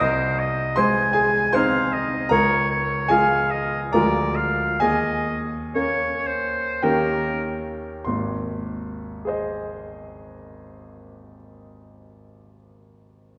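Heard from further back in a reverberant scoring stage, this short romantic classical duo for oboe and grand piano sits in Ab major, in a serene, warm 3/4 with rubato at 46-80 BPM. The roomy, distant oboe sings the melody with vibrato, while the smooth, vintage-toned piano accompanies as the music slows from 1.1 seconds until the harmony settles on Ab at 8.1 seconds. The oboe falls silent at 7.4 seconds, leaving the piano to carry a brief second section from 8.1 to 11.6 seconds before it fades out at 13.4 seconds.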